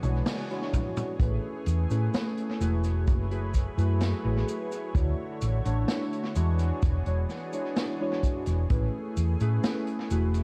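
Soaked in echo and cassette tape character within a small room, this dreamy, nostalgic vaporwave fragment opens with a drum fill from the swinging big-band kit, its distant snare, toms, hi-hat and cabasa trailed by tape echo, and a band accent around 0.3 seconds. A boomy, up-front kick joins at 0.7 seconds beneath a dark, round hollow-body bass that sits loud and punchy. Warbling lo-fi synth keys with phaser, chorus and 12-bit grit float over a lush, detuned unison pad through E13, Amaj9, F#m11 and Dmaj9 chords.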